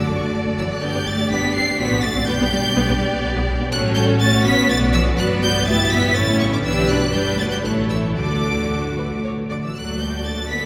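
A quick 3/4 pulse at 123 BPM, loosened by rubato, carries this lively, graceful classical-period movement for string orchestra in D major, cut from a longer piece: a focused, up-front first violin section sings the high melody over a warm, soft-attacked second violin line, smooth, even violas supply the accompaniment, and a close cello section and a rich, expressive double bass section hold the bass, while a long cathedral reverb wraps the ensemble in a wet hall glow as the harmony moves through G, F#m/A and Bm before settling on D at 8.2 seconds.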